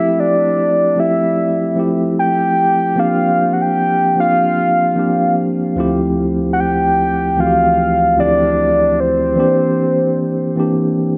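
Sensual and late-night in mood, this short R&B excerpt moves at a relaxed 75 BPM in 4/4 with a light sixteenth-note swing. A soft, octave-layered synth lead carries the melody from 0.0 to 10.6 seconds, staying between C5 and G5 with a full, round, dark tone built from triangle and sine waves over a sub octave, its fast attack giving way to sustained notes colored by vibrato, chorus and tape echo. Beneath it, a mellow tine electric piano supplies the accompaniment across its whole span, reaching from D2 up to G4 with a clean, close sound. Both parts sit up front in the mix, wrapped in a moderate plate reverb with a 3.3-second tail. The harmony drifts through Fmaj9, C7sus4, Dm11 and C9, lending the passage a lush, unhurried glow.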